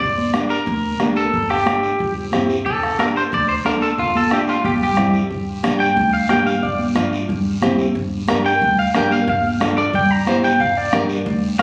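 Captured on a phone in the room with moderate club reverb, this fiery, danceable cumbia fragment puts a twangy, slightly broken-up electric guitar up front, treated with spring and plate reverb and tape echo, over a dark, fingerpicked nylon-string guitar entering at 0.3 s, woody pizzicato upright bass, a soft-beaten bombo, thick-skinned high-tuned congas and a raspy, vintage guiro, with a drum fill at 4.3 s leading into a clean electric guitar solo from 5.3 s.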